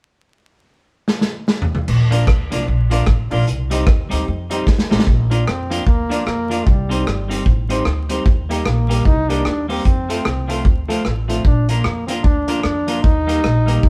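Ska at 150 BPM in Bb major, cheerful and bouncy, with a swung eighth-note feel in 4/4, cut from a longer piece. A vintage drum kit opens with a fill at 1.1 seconds, sounding punchy in the kick with dark cymbals, a medium-tuned snare, rim clicks, hi-hat, crash and toms, up front in a small, pumping room with a rolled-off top. The woody pizzicato upright bass on steel strings joins at 1.9 seconds as the chords move between Bb and Cm, and a clean, picked semi-hollow electric guitar and a dark, mellow upright piano with short-sustain stabs follow just after. After another drum fill, a clear trombone takes the solo melody at 5.5 seconds, smooth on top with light vibrato in a pop style, as the harmony moves through Bb, Cm, Eb and F. The band sounds like it is playing live in one room with light reverb, and vinyl crackle adds an old-record patina.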